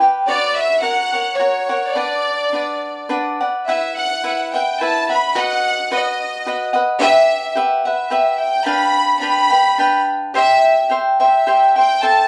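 Dramatic and passionate, this mariachi-style Mexican folk excerpt moves in a flexible, rubato 3/4 at around 107 BPM, starting in B harmonic minor before shifting to E harmonic minor at 3.7 seconds. A bright, crisp cavaquinho opens the excerpt at the very start, its picked acoustic accompaniment sitting up front. At 0.3 seconds a violin section takes the melody, its bowed ensemble tone clear and biting, with light vibrato and an intense, close presence. The harmony travels from F#sus4 and Bm through Esus2, Emadd9 and G7 before arriving on C. The pair is set in a wet studio ambience heard from further back in the room, lending a sense of space around the forward playing.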